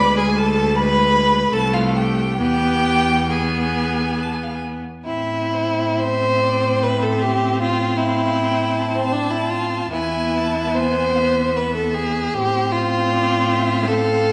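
Solemn and melancholic, this slow romantic string quartet movement in A minor unfolds in a rubato 3/4 at 61-80 BPM, an excerpt cut from a longer piece, with all four bowed parts sounding throughout its 14.3 seconds. A clear, distant first violin carries the melody high above a rich, smooth-topped second violin that sits up front on its second line, while a close, focused viola supplies accompaniment and a clear cello anchors the bass, each played with vibrato. The harmony settles onto E at 2.4 seconds and into A minor at 5.0 seconds as a new section begins, all within a moderate scoring stage reverb.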